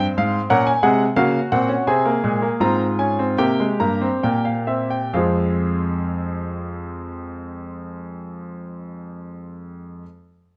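In a straight 4/4 pulse that moves between 64 and 93 BPM and slows through the first 5.1 seconds, this driving, serious baroque-style fugue in F minor unfolds in four voices on a solo grand piano, spanning F2 to Bb5 for the full 10.1 seconds of this fragment cut from a longer piece. The piano sounds clear and present, with long sustain and an up-front placement, set in a moderate recital hall reverb. The harmony moves from Fm through Gb/Bb and C7 before a new section begins on Fm at 5.1 seconds.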